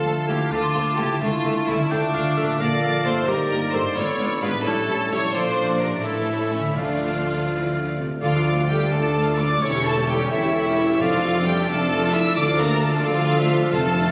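A fast, dramatic romantic orchestral passage in D minor, cut from a longer piece, opens with a lush, vibrato-laden violin section carrying the melody in 6/8 at 86 BPM under a flexible, rubato feel. Around it, a clear oboe, a pure silver flute and a soft-edged clarinet weave second lines, joined by a second, more intense and distant violin section. Mellow French horns hold sustained chords in the background, while a ringing, fingerpicked harp spreads arpeggios and soft-mallet timpani add very quiet, round accents. A smooth viola section fills in the accompaniment just after the start, with a very quiet, close cello section and a background double bass section anchoring the bass. At 8.2 seconds, a dark, very quiet tuba deepens the low end as the music moves into its second section, and the whole ensemble sits in a moderate scoring stage reverb with a compressed, room-captured sound that keeps the spirited, graceful mood intact.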